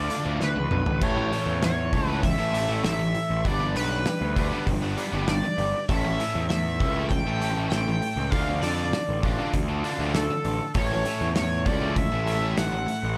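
This carefree, upbeat indie rock fragment at 99 BPM opens with an edgy, tearing sync lead carrying the melody over a growly, up-front fuzz bass, a crunchy overdriven guitar riff and a thick fuzz guitar sitting in the background, while a loose, punchy drum kit with dark cymbals plays a fill from 0.4 to 1.0 seconds. At 1.0 seconds a very quiet, reedy tonewheel organ with key click and slow rotary speaker joins on sustained chords, moving through A, G and Dm. Analog delay on the lead and both guitars, the pumping room sound of the drums and a heavy studio reverb give the whole mix an echo-soaked character.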